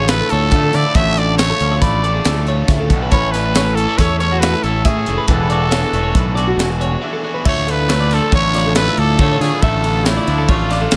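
A raspy, growling trumpet sits up front and carries the melody in this intricate, playful fragment of math rock and midwest emo, its pop-style vibrato adding grit. Beneath it, an overdriven fingered bass pushes forward with a bright, amped edge, while a crisp fusion drum kit with a high-tuned snare and punchy kick joins at 0.1 seconds, using kick, snare, hi-hat, ride and crash in a straight 5/4. A twelve-string electric guitar plays clean, bright arpeggios through digital delay, and a twangy electric guitar adds background accompaniment alongside a biting, double-tracked guitar riff. The harmony moves from Dmadd9 to Aadd9 and E9sus4, and after a short break at 7.0 seconds the music returns to Dmadd9 at 7.5 seconds as a new section begins. The dry sound keeps each part distinct.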